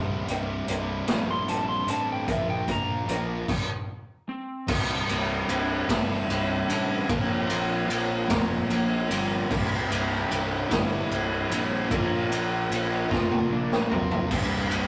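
A raw garage drum kit sits up front, with a boomy kick, a medium-tuned snare and a gritty, saturated character whose top end is rolled off. This restless, anthemic fragment of quiet-loud alternative rock moves in a straight 6/8 at 50 BPM, counted in dotted quarters, in C mixolydian. A bright, double-tracked fuzz guitar drives the riff over a round, punchy picked bass with overdrive and fuzz. The harmony swings between C and Bb5, later touching Bbsus2. From 1.3 seconds, a dark, slightly broken-up electric guitar played through a small old amp carries the melody in the background with slapback echo. After a stop at 3.5 seconds, the band pushes into the second section, and a drum fill at 13.1 seconds rounds it off, all in a rough rehearsal-room sound with tube saturation and a moderate stone-room reverb.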